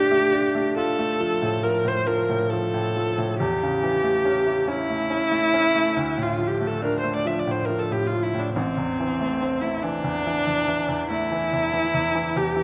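In a slow, rubato 12/8 lilt, this romantic classical duo for viola and baby grand piano unfolds with a melancholic, yearning mood, its harmony moving from D minor through A7 back to D minor before settling on A minor. A single bowed viola carries the melody up front with a rich, focused tone and vibrato, while the bright, brilliant piano accompanies from its lower and middle register, intimate and polished, with its action noise audible. Both play throughout this 12.6-second fragment of a longer piece, set in a moderate concert hall reverb.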